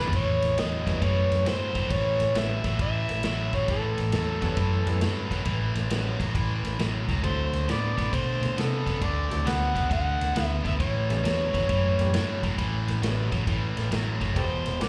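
A cranked, overdriven guitar riff with slapback echo opens this laid-back, gritty electric blues shuffle at 135 BPM in A mixolydian, joined at once by a round, foam-muted electric bass and a vintage drum kit with a punchy kick, dark cymbals and a pumping small-room sound. At 0.2 seconds an amplified, overdriven harmonica takes the solo melody with light vibrato, tongue slaps and scooped notes, and from 0.9 seconds a woody, brilliant upright piano adds accompaniment in the background. The chords move from A7 to D7 and back before landing on E7, all heard through a club PA with light reverb, in a passage cut from a longer performance.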